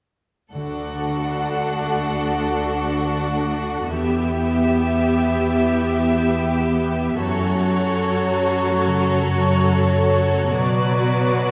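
A rich viola section sits up front, carrying the bowed accompaniment with light vibrato and a smooth, even tone in this cinematic fragment of longing and bittersweet feeling. Beneath it, a cello section supplies the bass, also up front, with a full, rounded sound, vibrato and a soft top end. A violin section adds a clear, focused second line with its own vibrato, while a concert harp rings out fingerpicked arpeggios in the background with a warm, acoustic glow. All four parts play together from 0.5 to 11.5 seconds in a loose, rubato feel, moving through D, Em, F#m and Bm. The ensemble is heard from further back in a wet scoring stage with a long reverb tail and a darkened, softened top end.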